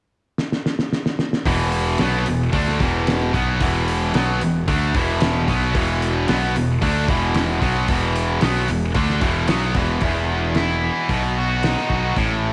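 A cloth-damped, thuddy drum kit opens this driving, sunny classic rock clip with a fill at 0.4 seconds, its fat snare and tight kick sounding muffled and gritty, with a rolled-off top. At 1.5 seconds two tight, bright distorted guitars enter on picked riffs over an E5 chord, one up front and the other in the background, joined by a round, dark fuzz bass that is overdriven and sits up front. The straight 4/4 groove moves at 112 BPM in a studio with light reverb, shifting at 10.0 seconds to E and then B chords before the cut.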